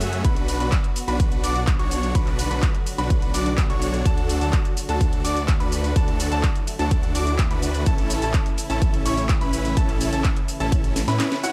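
A straight 4/4 pulse at 126 BPM drives this anthemic, powerful stretch of festival progressive house, cut from a longer piece. A punchy, overdriven electronic kick sits up front from 0.2 seconds, layered with a house kit of handclaps, hi-hat, shaker and a cracking snare that carries the same grit and the air of a large room, and a drum fill arrives at 11.0 seconds. Huge, bright supersaw chords carry the riff with sidechain pumping and delay, while a thick detuned saw bass, thickened with chorus and pumping too, anchors the low end before dropping away at 11.2 seconds. Behind them, a clear, worn grand piano plays high arpeggios through delay, and a dark, woody string section holds bowed, vibrato-laden chords, both tucked into the background and breathing with the sidechain. The harmony moves from Bm to D to A, and the dark, warm production keeps reverb to a minimum.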